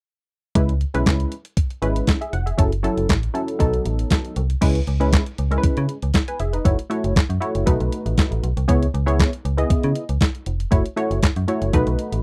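A crisp 8-bit digital drum machine drives this slick, funky clip of early-eighties boogie funk at 118 BPM in C# minor, its thumpy kick, medium-tuned snare, hi-hat, handclaps and crash cymbal sounding tape-warm and sampler-like, as if re-recorded in a large room. A metallic FM bass with a fast attack, decaying notes and a mellow digital tone sits up front beside a punchy polysynth comp, whose detuned sawtooth and triangle layers, sub octave and filter pluck come across dark and sustained, thickened with chorus. All three parts play from 0.6 to 12.2 seconds over a straight 4/4 cycle of C#m7, F#m7 and B7, in a dry, close 1970s-style studio sound with little reverb.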